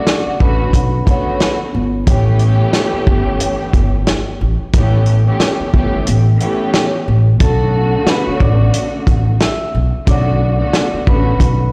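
Moody and dark, this boom-bap hip-hop excerpt at 90 BPM in B minor swings its 16ths over a Bm7 to A7 progression, with a tight, mid-forward soul drum kit and a woody pizzicato upright bass up front, lush bowed studio strings with expressive vibrato beneath, and a metallic, ringing vibraphone that carries the melody briefly at the start and returns at 7.4 seconds after the kick drops out from 6.1 seconds, the mix sounding as if played through a big sound system in a bare room.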